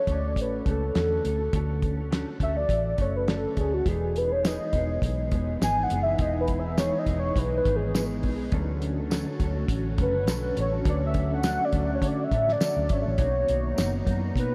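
A dreamy, reverb-soaked mix opens this laid-back, nostalgic slice of indie and bedroom pop, cut from a longer piece, with a gentle swing in its groove. A velvety, detuned synth lead carries the melody up front as a soft solo until 13.2 seconds, its sawtooth and triangle tones thickened by analog chorus and delay. Beneath it, a mellow, clean electric guitar plays compressed, fingered accompaniment through lush chorus and a warbly pitch drift, while a vintage foam-muted bass adds a round, amped low end. The cloth-damped drum kit sits dry and up front, with a fat snare, tight kick, hi-hat and a rolled-off top. At 4.2 seconds a string machine of violas enters with slow-attack sustained chords, phaser and ensemble chorus in the background, and a jingly tambourine joins just after at 4.4 seconds as the harmony drifts between lush major-seventh chords.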